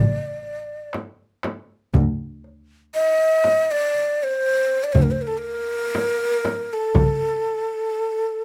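A modest small-room reverb gives this short fragment of an Arabic maqam ensemble piece an intimate, close-quartered sound, and its mood is melancholic and full of longing. A breathy, mellow end-blown reed-cane ney sits up front and carries the melody from the first moment to 8.4 seconds, its tongued notes wavering with vibrato and an unsteady, human quality. Beside it, a single bowed double bass, also up front, plays a rich, expressive low line with a soft attack, vibrato and portamento. A darbuka with a clay shell and natural skin, played with soft hands, adds a vintage, band-limited tone, while a small frame drum, close and dry, contributes a bright edge to the percussion. The music moves in 10/8 with a straight feel, and after a brief opening passage a new section begins at 1.9 seconds and runs to the end.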